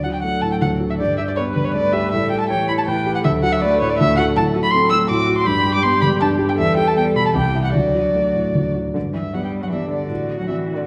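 A muted violin sits up front carrying the melody, its veiled, con sordino tone shaded with vibrato and gliding portamento, in this quick, cheerful classical-period movement for piano quartet, cut from a longer piece in a lilting three-beat metre with a spirited, rubato feel. Beside it, a dark, mellow grand piano provides the accompaniment, intimate and vintage in character, with the soft clatter of its action audible. A muted viola joins at 0.2 s to fill out the accompaniment with a smooth, lightly vibrant bowed line, while a distant muted cello traces a second line in the background, also touched by portamento. The harmony moves briskly through D, G and A7 before shifting toward G major at 4.4 s, and a new section arrives at 9.0 s. The whole ensemble sits in a generous, wet scoring-stage reverb that lends the soft-edged strings a glowing halo.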